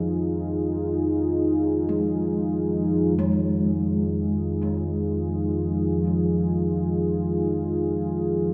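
Ominous and desolate, this short dark ambient drone piece in F minor drifts in free time, cut from a longer work and resting on a single F minor chord. A deep, rumbling drone sits up front from the start, its detuned, wave-folded sawtooth and triangle tones swelling in slowly and hanging on with a long release inside their own built-in reverb. Alongside it, a moody analog pad holds sustained chords, its detuned sawtooth body thickened by a sub octave and softened by chorus. At 1.9 seconds a gamelan-type bronze metallophone enters with soft arpeggios on padded disc mallets, its paired tuning producing shimmering beats that ripple through a tape echo. The mix is steeped in echo and a moderate plate reverb, giving the metallic ringing an airy glow above the dark, deep low end.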